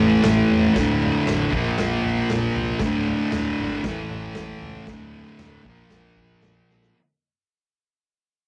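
A straight 4/4 pulse at 116 BPM drives this swaggering, gritty slice of garage rock in D minor, cut from a longer piece and fading out across its whole seven seconds. Up front, a thick, double-tracked fuzz guitar carries the riff from D2 to Bb3, moving through power chords on A5, D5 and Bb5. Behind it, a dark, round hollow-body short-scale bass, picked and amped, sits low between D1 and C#2. The vintage acoustic kit stays in the background, with a punchy kick, a medium-tuned snare and toms in a small, pumping room with a rolled-off top, and a drum fill arrives at 6.7 seconds. The whole take has the rough feel of a rehearsal room, with light reverb, saturation and lossy compression artefacts adding grit.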